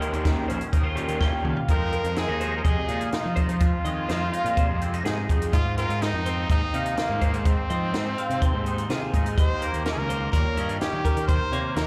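A brilliant, present trumpet takes the solo melody from 1.7 seconds, singing with vibrato and scooped notes in a pop style through slapback and tape echo over this playful, intricate slice of math rock and midwest emo at 125 BPM in Ab major. Beneath it, a twangy, fingered electric guitar plays clean accompaniment with ensemble chorus, while a compressed twelve-string electric guitar spins bright, picked arpeggios up high, bathed in lush chorus. A dark, lo-fi, double-tracked garage guitar opens with an overdriven riff that stops at 1.5 seconds, partway through a drum fill that begins at 1.2 seconds and launches the next section at 1.7 seconds. The compact cocktail kit sits up front with a punchy kick and high-tuned snare in a tight booth, driving a straight 4/4 alongside a growly, fuzz-soaked picked bass. The harmony moves from Eb7sus4 to Ab69 and later back toward Eb7, all heard as a live club gig through the venue's PA with light reverb and small-room ambience.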